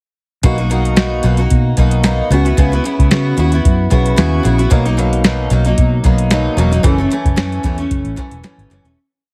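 A heavily compressed, radio-like sound with light reverb frames this nostalgic, sunny indie and bedroom pop piece in B major at 112 BPM with a gentle sixteenth-note swing, where an up-front picked steel-string acoustic guitar strums sixteenths in jazz chord shapes through Bmaj7, C#m11 and F#m7, colored by subtle chorus, vibrato and plate reverb, over a dark, foam-muted fingered electric bass playing a round, melodic line and a soft, overdriven vintage rhythm box with a deep kick, crisp snare and metallic hats keeping a relaxed, dry backbeat, before the whole piece fades out from 6.8 to 9.0 seconds.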